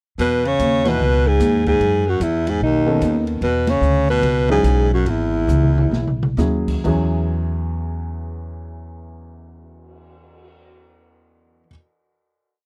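Swung 4/4 with a woody walking upright bass and a dark, small-room drum kit on ride cymbal drives this relaxed, playful small-group jazz piece, where a mellow alto saxophone states a motif-based melody as a bright baritone saxophone doubles it in octaves, an intimate baby grand piano comps in syncopated drop-2 voicings, and the band punches accents and slows down into a drum fill at 5.5 seconds; the horns stop at 6.4 seconds and the rest of the band holds the final chord from 6.8 seconds in a dry, close 1970s-style studio sound.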